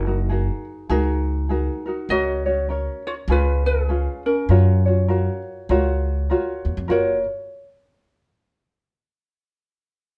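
From the first beat, a mellow ukulele carries the melody over a warm, up-front tenor ukulele, both thumb-plucked and light, and a woody, dark, thumpy pizzicato upright bass on gut strings, the trio playing live together in one moderately reverberant studio room on this relaxed, dreamy Hawaiian piece in F# major at 100 BPM, tuned to A4 = 445 Hz with a swung eighth-note feel, until the ukulele and bass stop at 7.2 seconds and the tenor ukulele at 7.7 seconds in this fragment cut from a longer performance.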